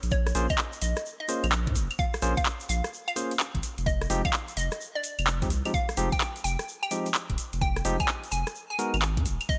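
A hollow, detuned square pluck with chorus and digital delay carries the melody over a thick, saturated sub bass, a garage kit of claves, handclaps, metallic hi-hats and rim clicks, and a grainy tube shaker in the background, joined at 0.1 seconds by a knocking electronic kick and at 0.3 seconds by barky, clean electric piano stabs, in a late-night, skippy two-step UK garage excerpt at 128 BPM in Bb minor, swung on the 16ths and moving from Bbm9 to Fm9 to Abm9 with light reverb and a bright 1980s-style digital sheen.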